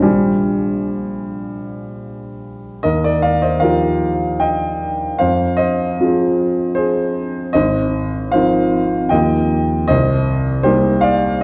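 In a 3/4 with a free, rubato feel, this short excerpt of impressionist classical solo piano moves at roughly 60-80 BPM in Eb major, tuned to A4 = 445 Hz. The mood is serene and hazy, carried entirely by a grand piano with a smooth, vintage tone that sits up front in the mix and spans from Ab1 to Ab5. Its harmony opens on a lush Bb13, then at 2.9 seconds settles into a longer passage that drifts through Ebadd9, Fm7 and Ab69 before returning to Ebadd9 and coming to rest on Cm7 at 9.9 seconds. A generous concert-hall reverb with a 2.0-second decay surrounds the instrument, and the dark, warm production gives the whole piece a hazy, dreamlike glow.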